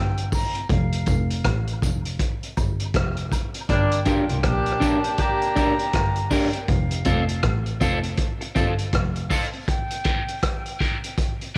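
This dub reggae piece in G minor moves at an unhurried 80 BPM with a swung sixteenth-note feel, and its mood is spacious and meditative as the harmony shifts between G minor and F. It opens in a break, with a distant, pure-toned silver flute carrying the melody through cassette grit and tape echo. A single player bows an expressive double bass line underneath, with soft attacks, vibrato and portamento. A vintage drum kit sits up front with hi-hat, rim click and a punchy kick, its top rolled off, while tambourine and woodblock stay quietly in the background, filtered and echoing. A mellow, roomy horn section adds a brief second line from 3.7 seconds, and a slightly broken-up electric guitar enters at 4.1 seconds with picked, echoing accompaniment. A filter sweep begins at 6.7 seconds and colours the closing stretch of this homespun cassette recording, which sits in a light reverb.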